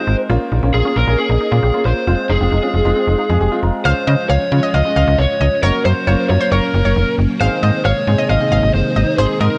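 Lightly reverberant and nostalgic, this bright synth-pop excerpt sets a dark, overdriven lead guitar melody with tape echo over a clear grand piano, an up-front snappy FM slap bass and a squelchy, phased blip-pluck arpeggio that gives way at 3.9 seconds to a warbling chorused analog pluck and lush string-machine chords moving from Bbm and Fm to Db, Gb and Abadd9, just after a piano fill from 3.0 seconds.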